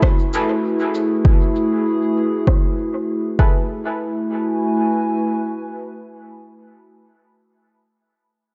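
Meditative and deep, this ambient dub fragment, cut from a longer piece, moves at 98 BPM in F# minor with a light swing, its dark production rounded off in light reverb. A warbling, nostalgic tape-like pad with a detuned, lo-fi character holds sustained chords up front, while a muted, evolving dub chord stab with a filter pluck sits further back, its chorus and dub echo trailing behind. A punchy, layered electronic kick drives the opening alongside an overdriven rim click and shaker under a filter sweep, both dropping out by 3.5 seconds as the harmony settles from A69 toward F#m11 at 3.7 seconds.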